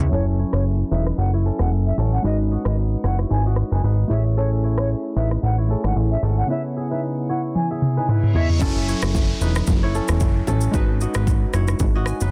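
Afrobeats at 113 BPM in F# dorian, a mellow, hypnotic excerpt from a longer piece, where a punchy, funky sawtooth bass with a filter pluck and fast attack sits up front beside a deep-kicked, tape-warm drum kit of rim click, shaker, toms and crash, its snare softly clipped. Round, detuned analog keys with chorus and an evolving filter sweep carry the F#m7, G#m7, Amaj7 and C#m7 changes under a crisp, ringing fingerpicked kora riff with delay, while an airy concert flute with vibrato, close-miked and expressive, sings the melody until 8.5 seconds. A drum fill, reverse cymbal and downlifter lead into the second section at 8.6 seconds, where very quiet congas and bongos join, and a keys fill closes the dry, dense, heavily limited mix.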